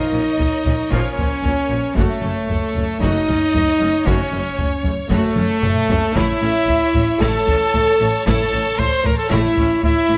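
A straight 4/4 pulse at 115 BPM drives this cut from an epic, dramatic orchestral film score, with a heavy-stick taiko ensemble entering at 0.4 seconds. The harmony moves from Bb minor to Gb minor at 2.0 seconds, and a drum fill from 5.4 seconds ushers in an A major chord at 6.2 seconds. Focused, lush symphonic violins carry the melody with vibrato over a distant studio violin line and smooth violas, while even, bowed cellos and double basses hold the bass in the background. A mellow French horn section sustains chords up front as a clear solo trumpet punches out stabs, all set in a moderate scoring-stage reverb captured by close, detailed microphones.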